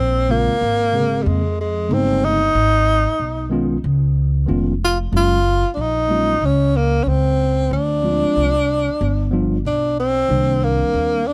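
Swung sixteenths in 4/4 drive this cool, nocturnal hip hop fragment, where an up-front breathy tenor saxophone carries a jazz-style solo melody with vibrato, soft attacks and scooped notes over a woody pizzicato upright bass and a clean tine electric piano playing through its built-in speakers, captured in a dry, close 1970s-style small room.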